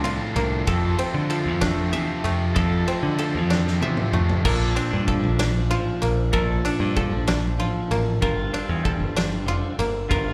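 Intricate and wistful, this short math rock and midwest emo excerpt in 6/8 sounds like a live club gig heard through the venue's PA, with a roomy, distant drum kit that has dark cymbals, a fat snare and punchy kick. A woody, dry koto plays fingerpicked arpeggios over a twangy electric guitar with slapback echo and a bright, up-front picked bass, while a double-tracked, overdriven garage guitar drives a riff as a drum fill arrives at 3.5 seconds. At 4.4 seconds the garage guitar drops out and the chords move from Dm7 and Fmaj7 to Bbmaj7, settling on Gm11.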